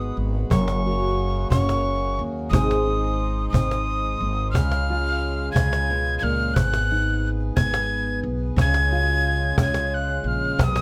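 A pastoral, hopeful mood runs through this short cut from a longer acoustic folk piece for a small band, moving at an easy 60 BPM in a lilting 6/8. A breathy metal whistle carries the melody, its tongued notes opening with a chiff and its tone mellow, with rolled-off highs and an unsteady vibrato that gives it a human, wavering quality. Beneath it, a dark, full-bodied nylon-string guitar is thumb-plucked in a deep classical manner, while a pedal harmonium holds smooth, reedy chords that seem to breathe in the background. The pizzicato upright bass sits up front with a woody, steel-string tone, and a close, snappy cajon with snares is struck with hard hands, giving the pulse a crisp edge. The harmony drifts from G#m7 through F#add9, G# and C# before settling back through G#m to C#, all framed by a light reverb across the 10.8 seconds.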